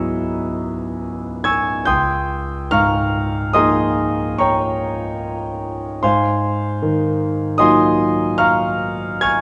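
Classical impressionist solo piano, luminous and dreamy, moving in a rubato 5/4 through a short passage cut from a longer piece. A clear concert grand carries everything from 0.0 to 9.4 seconds, its natural tone pairing deep bass with long sustain as it sits up front through harmonies such as Eadd9/Db, Db69 and Ab13. A moderate recital hall reverb and a dark, warm production surround the instrument.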